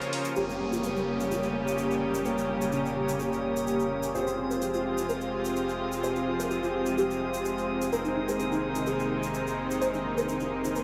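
Progressive house at 127 BPM in 4/4, bittersweet and expansive, this fragment from a longer piece opens on a brief break, with a lush, bright supersaw pad and a smooth soft supersaw playing low-pass-filtered stabs with dub echo sitting up front from the start, over chords moving from Gdim/F at 0.4 s to Fmadd9 at 4.1 s and Abadd9/F at 7.9 s. In the background, a soft, round, dark pluck plays arpeggios through ensemble chorus, cassette tape character and dub echo, with a filter sweep on it from 0.4 s, while a glassy texture of drifting overtones hovers high in its own chorus and reverb. A deep, thick saturated sub bass enters at 0.4 s alongside a very quiet electronic downlifter that runs to 4.1 s, and a grainy, close egg shaker ticks throughout in a lightly reverberant space.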